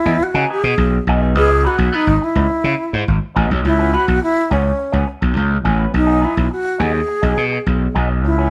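A band playing live in one room is caught with light reverb, the bass and flute sitting up front in this glamorous, driving slice of disco cut from a longer piece. The gritty slap bass carries the low end with an overdriven, growly, punchy tone that feels direct and amped. Above it, the electric guitar runs through an envelope filter for a twangy, scooped wah sound, its clean, picked accompaniment sitting lower in the mix. The breathy alto flute takes the melody from the first moment, tongued and expressive with a touch of vibrato. The harmony opens on C#m9, shifts to C#m7 when a new section begins at 3.6 seconds, and moves to G#m7/B at 5.9 seconds.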